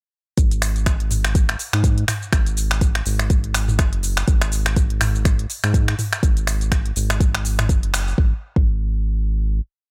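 At 0.4 seconds a complete afro house piece at 123 BPM in 4/4 starts at once: a deep electronic kick pounds out a four-on-the-floor pulse beneath a round analog bass and a crisp afro-pop drum kit. The mood is driving and warm, with a 57% swing on the sixteenths giving the groove its lilt. The programmed kit sets closed and open hi-hats, shaker, finger snaps and low toms into a backbeat pattern, with the kick sitting loudest in the mix. The bass blends sawtooth, sine and triangle tones into a dark, detuned sound with a fast attack, holding long gliding notes that pump against the kick through sidechain compression. A band accent lands at 7.9 seconds, and from 8.2 seconds a final bass note rings on as the kit drops out, with the kick carrying on until 8.7 seconds and the bass holding until 9.6 seconds. The sound is close and up front, with little reverb, and the track is tuned to A4 = 442 Hz.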